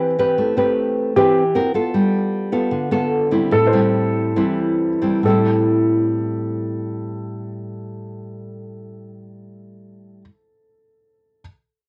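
Bossa nova with a wistful, smooth mood, this short passage is cut from a longer piece and moves at a straight four-beat pulse that slows down between 1.9 and 5.2 seconds. A nylon-string guitar sits up front, its fresh strings fingerpicked in a classical manner, with finger squeak audible as it plays across a low-to-middle span until 10.3 seconds. A clear concert grand piano accompanies alongside it, vintage in character with a deep bass and a smooth touch, staying in a narrow middle register until 11.4 seconds. The harmony drifts through rich extended chords, opening on Am9 and passing through Fadd11 and G9 before settling on Am7, with a second section arriving at 5.2 seconds. Both instruments carry a cassette-tape coloring, and the whole take has the intimate feel of a home recording made in a small, wet booth with a brief reverberant tail.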